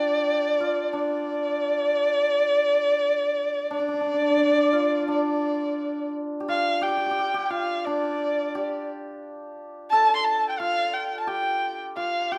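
Wistful and tender, this short excerpt from a Chinese traditional chamber piece moves in an unhurried 2/4 with a straight feel, its two sections changing at 6.5 seconds. A dark, woody erhu carries the melody up front, one bowed player shaping soft-attacked notes with vibrato and portamento, while a hammered dulcimer plays a lower second line, its shimmering, ringing strikes also up front but quieter than the erhu. Both play throughout, set in a moderate recital hall reverb.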